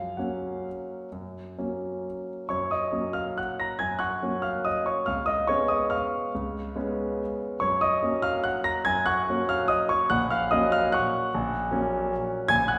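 A concert grand piano carries this short classical waltz on its own from 0.0 to 12.8 seconds, its tone intimate and polished, with deep bass, long sustain and audible action noise that keeps it close and up front. The mood is sparkling and elegant, moving in 3/4 with a rubato feel as the pulse drifts between 124 and 158 BPM. Set in F# major and tuned to A4 = 438 Hz, the piano covers a range from A#1 to A#6. The harmony moves from F# to C#7 at 5.1 seconds, back to F#, and then to F#/A# at 10.1 seconds. The phrase is stated once and then begun again, and the clip is cut from a longer piece. A wet recital hall reverb with a 1.4-second decay surrounds the instrument, giving the sense of a church or concert hall.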